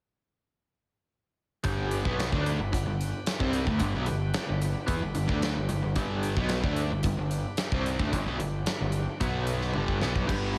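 Swaggering and sunny, this classic rock excerpt rides a straight 4/4 groove built on a crunchy overdriven guitar riff, joined by a hollow-bodied semi-hollow guitar with tremolo sitting in the background and a fuzzy, direct-and-amped electric bass. A big acoustic drum kit sits up front with a medium-tuned snare, tight kick and rolled-off top, while a bright tonewheel organ holds very quiet, shouting chords through a slow rotary speaker, and the harmony moves from G to B5 before a drum fill at 9.8 seconds returns it to G. A picked steel-string dreadnought acoustic guitar, bright with fresh strings and a finger squeak, slips in at 10.3 seconds, with light small-room reverb framing the whole.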